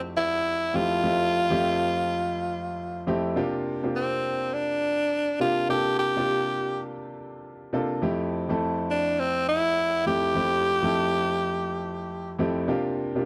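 A raspy, gritty tenor saxophone carries the melody up front from 0.2 seconds, playing with forceful punch, light vibrato and a slapback echo in a pop-style solo. Beneath it, a clear concert grand piano with deep bass and short sustain supplies polished accompaniment over Fmaj9 and C9sus4 chords, giving this upbeat, bouncy R&B excerpt a swung sixteenth-note feel. The sound is dry and close, like a 1970s studio session in a small room.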